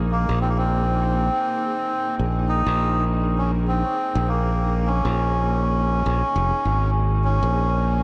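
A loping 4/4 groove at 101 BPM, with a 59% swing on the sixteenths, sets this meditative, hazy ambient dub passage in Bb minor, cut from a longer piece and resting on a single Bbm9 chord. Up front, a bright, growly fingered electric bass holds the low end between F1 and Bb1, its tone direct and electric. A reedy, breathy melodica carries the melody from 0.1 s, nasal yet mellow and smooth, its plastic-case character trailed by dub echo. Behind them, a granular cloud pad sustains chords from Bb3 to Ab4, blurred and evolving with detuned unison layers, a slow attack, long release, its own reverb and a vintage 12-bit sampler grit. The dark production sits in a small room with light reverb, lending the whole a murky, dreamlike calm.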